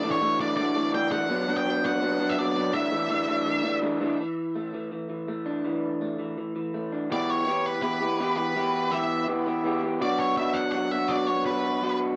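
The recording has a dark, warm studio sound with a moderate room reverb, and it is cut from a longer piece. It is a carefree, jangly rock track at 165 BPM in a straight 4/4, set in A mixolydian. An electric guitar played through a small old amp carries the picked riff throughout, its slightly broken-up, lo-fi tone softened by a lush chorus and placed up front. Over it, an octave-fuzz lead guitar picks out the melody with a distorted edge and analog delay, dropping out at 3.8 seconds and returning at 7.1 seconds. The harmony moves between Asus4 and Bm before shifting to Em and back to Bm in the closing section.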